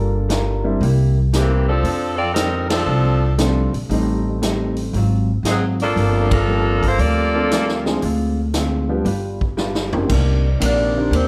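Dark, clean hollow-body electric guitar, open-sounding grand piano and woody, thumpy pizzicato upright bass open this dramatic big band swing in G minor at 116 BPM, joined by a boomy, natural drum kit in a big room, before a tight, bright saxophone section carries the vibrato-laden melody from 1.3 to 7.9 seconds, punctuated by band accents; a drum fill follows, then a background saxophone section holds warm sustained chords and a mellow, distant tenor saxophone begins its solo at 10.7 seconds as this passage, cut from a longer piece, closes.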